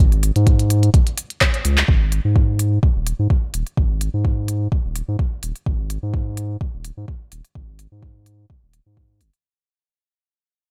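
A deep, thick sine sub bass with tube saturation and sidechain pumping sits up front in this hypnotic, cool minimal techno excerpt at 127 BPM with a light 16th-note swing, joined by a soft, tape-warm electronic kick and a clicky kit of hi-hat, handclaps and rim click, both re-recorded in a large room yet dry of reverb, with a drum fill from 1.4 to 1.9 seconds before the track fades out from 1.9 seconds.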